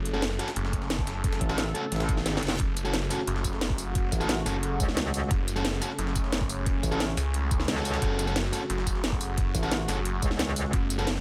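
Dark technical drum and bass at 177 BPM in F# minor, this aggressive, mechanical excerpt stays on an F# minor chord for its full 11.2 seconds, cut from a longer piece. A snarling, growling distorted saw bass sits up front with tube saturation and sidechain pumping, joined at 1.4 seconds by a metallic wobble bass with FM bite and chorus. Above them, a sweeping resonant pad holds sustained chords with a slow attack and filter swell, pumping under sidechain, while a sludgy overdriven electric guitar fires picked stabs through delay. The up-front drum and bass kit drives with a cracking snare, metallic hats and tambourine, a knocking electronic kick enters at 0.7 seconds, and a gritty breakbeat sampler-style kit with a high-tuned snare sits very quiet beneath. A faint reverse cymbal sounds from 2.1 to 2.6 seconds, with a drum fill joining it at 2.3 seconds, and the whole mix rests in a digital ambience carrying a faint mains hum.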